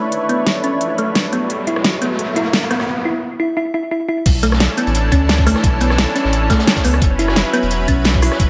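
A lush, detuned sawtooth pad holds sustained chords with chorus and sidechain pumping, while a tine-like FM synth pluck spins gentle arpeggios through chorus and tape echo, opening this soulful liquid drum and bass excerpt in B minor at 174 BPM. A pop drum kit with a fat snare and crisp hats sits up front from the start. Over a Bm11 to F#7sus4 progression, an electronic riser runs from 0.1 to 2.9 seconds during the build-up, and a short break follows. At 4.3 seconds the drop arrives as a deep, round sine sub bass and a knocking, layered electronic kick enter together. Alongside them, a saturated, gritty breakbeat kit with a high-tuned snare sits in the background, high-pass filtered and rolled off at the top. Light digital reverb and ambience wrap the whole piece, with a gentle 16th-note swing.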